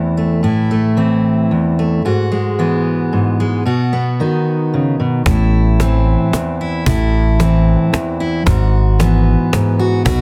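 Uplifting and hopeful, this short excerpt of indie folk in a straight 3/4 opens with a full-bodied, fresh-stringed fingerpicked steel-string acoustic guitar moving through Am, Eadd9/G# and B in a small, lightly reverberant room. At 5.3 seconds a round, dark fingered electric bass and a snappy cajon with snares join up front, and the arrangement builds with a drum fill through to the close at 10.2 seconds.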